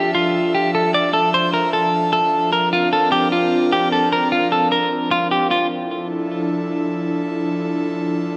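A half-time 4/4 groove at 151 BPM sets a menacing, hard-hitting hip hop mood in D minor, in this short fragment cut from a longer piece. A clean, picked electric guitar carries the melody between F4 and D5, compressed and up front, playing from the start until 5.7 seconds. Alongside it, an airy, breathy pad with a detuned, bright character and a chorus effect holds sustained chords from F3 to E5, continuing alone until 8.4 seconds. The harmony moves from Dmadd9 to Bbadd9 at 2.5 seconds and returns to Dmadd9 at 5.7 seconds, where a new section begins. The recording sits in a wet scoring-stage reverb with a 1.5-second decay, and a worn, warbling cassette-tape quality adds a drifting, unsteady pitch to the sound.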